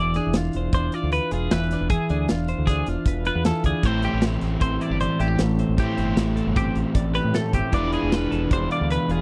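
Dry and close, with little reverb, this short excerpt has the tight, in-the-room sound of a 1970s studio. It is restless, intricate math rock with a midwest emo edge, moving at 154 BPM in a straight 5/4 in A minor. Two bright, twangy twelve-string electric guitars ring clean and compressed from the start, one laying down the accompaniment while the other picks high arpeggios. Underneath, a growling fingered bass with overdrive gives a punchy low end, and an up-front acoustic drum kit with a tight kick, medium-tuned snare and hi-hat comes in at 0.1 seconds. At 3.8 seconds a crunchy, double-tracked overdriven guitar joins with a picked riff as the harmony moves from E7b9 to Am7, returning to E7b9 at 7.7 seconds.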